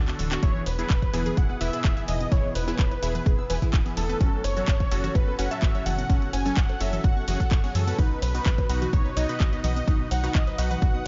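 A short drum fill opens this euphoric, hopeful progressive house passage at 127 BPM in E major, as an evolving wavetable pad, a punchy detuned supersaw stab and a tight sawtooth sequencer bass begin together. At 0.4 seconds a punchy, tape-warm electronic kick arrives up front, re-recorded in a large room, and the chords move from E to F#m at 4.2 seconds and on to B at 8.0 seconds. A thick, nasal unison lead carries the melody with vibrato and tape echo, joined very quietly by a soft, pure FM bell on a second line in the same range. Alongside it, a round analog pluck spins chorused arpeggios in the background, while the phaser-treated stabs and the very quiet, morphing pad fill out the harmony. A layered house kit of handclaps, hats, ride and shaker joins analog-toned congas and bongos, with sidechain pumping on the bass, stabs, pluck, lead, hats, cymbals and percussion, all set in a dark digital ambience that keeps the top end dim.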